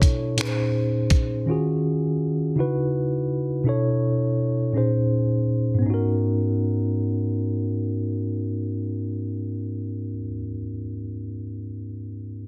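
A dense, heavily limited modern master with light reverb frames this sultry, late-night slice of slow six-eight R&B, cut from a longer piece. A dusty, sampler-style drum kit sits up front for only the opening 1.3 seconds, its finger snaps, hi-hat and thumpy kick compressed and gritty, re-recorded in a large room, with soft clipping on the snare. Alongside it from the very start, a mellow tine electric piano carries the accompaniment until 12.5 seconds, playing on by itself once the drums drop away, its clean, direct tone placed close to the listener and spanning from G#2 to C#5. The harmony drifts through a chain of minor-eleventh chords, A#m11 to D#m11, C#m11 and Bm11, before circling back to A#m11. At 5.8 seconds a new section opens on G#m11, keeping the same sultry, late-night mood.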